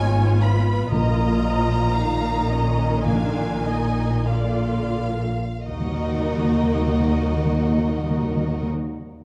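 Solemn and yearning, this slow romantic orchestral excerpt in Eb minor moves with rubato at 42-62 BPM, slowing through its opening 5.7 seconds as the harmony passes from Fdim/Ab through Bbsus4 and Bb7 to settle on Ebm. Violins carry a lush, vibrato-rich melody with a smooth top over a second violin line, while violas add expressive accompaniment with portamento, cellos sit in the background with a soft attack, and the woody, dark double basses stand up front. Timpani with calf heads and medium mallets enter at 0.9 seconds, all set in the wet reverb of a recital hall.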